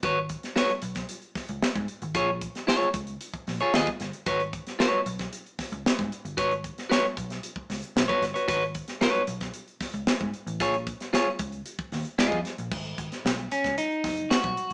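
Funk at 114 BPM in G# dorian, hypnotic and funky, drifting between G#m7 and A#m7 in a short section cut from a longer piece. A bright, twangy electric guitar at the edge of break-up sits up front with scooped, picked accompaniment, a clean electric guitar solo entering at 12.7 seconds, while a vintage muted picked bass adds a round, foam-muted low end. A crisp fusion drum kit with a high-tuned snare, tight kick, dark cymbals, hi-hat and crash plays along with the band, which plays live in one room through a small speaker sound wrapped in wet studio reverb.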